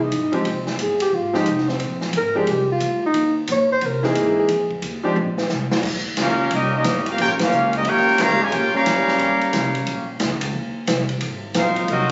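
A breathy, whispered tenor saxophone opens this swinging, brassy big-band jazz piece at 179 BPM over bright grand piano, woody pizzicato upright bass and a distant, roomy drum kit, until a drum fill at 5.2 s leads into Eb major, where a clear, up-front trumpet section carries the melody above a mellow trombone section, punctuated by a band accent at 7.3 s, the whole captured on a muffled phone recording in club reverb.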